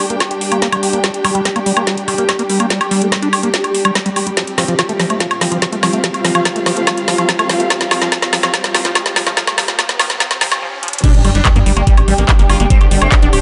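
Psychedelic trance in a straight 4/4, psychedelic and intense, taken from a longer piece and built as a build-up that breaks into a drop at 11.0 seconds. From the start, a squelchy, resonant acid bass riff runs through phaser and delay under a filter sweep, while an evolving, morphing wavetable pad holds sustained chords in the background and a dark, distant bowed chamber string section adds a vibrato-laden texture, all three pumping against the kick. The up-front garage kit, with a woody snare, metallic hats, handclaps, woodblock and crash, plays a drum fill through most of the build, joined by a knocking electronic kick, and a background riser and sub drop enters at 5.4 seconds. After a short break, the drop brings an impact, a buzzing, shimmering plucked sitar melody with phaser and delay, and a tight, punchy sequencer bass driving underneath. The mix sits in a lush hall reverb with the top end rolled off.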